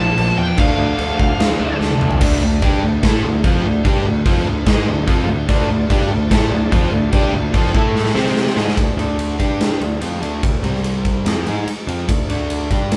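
A driving, aggressive hard rock excerpt in D minor at 146 BPM opens with a smooth overdriven lead guitar melody over a very quiet, reedy tonewheel organ with key click and slow rotary, a double-tracked distorted guitar riff, two overdriven semi-hollow guitars, and a growly picked bass, as a huge, punchy arena drum kit sits up front from 0.2 seconds with fills from 1.8 to 2.2 and from 8.0 to 8.8 seconds, the organ returning between 5.5 and 8.8 seconds before the semi-hollow guitars, bass and drums carry on to the end in a live-room sound with moderate studio reverb.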